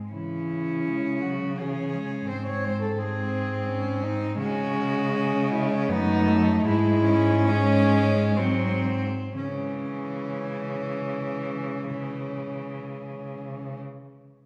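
This classical excerpt, a lyrical piece for cello ensemble in C# minor and 3/4, carries a yearning, melancholic mood at a rubato pace between 59 and 86 BPM. Four bowed cellos, one player each, share the texture: a warm, floating cello sings the melody, a rich, airy-bowed cello traces a close second line, another rich, distant cello fills in the accompaniment, and a dark, intimate cello with vibrato and a smooth top anchors the bass up front. Every line is played sul tasto with a soft attack, and the three upper parts have a pure quality. The harmony moves from C#m through G#, a diminished chord and G#7, and the tempo slows from 3.3 to 9.4 seconds before the music settles back on C#m and opens into a new section. A wet recital hall reverb places the group further back in the room, and the excerpt is cut from a longer piece.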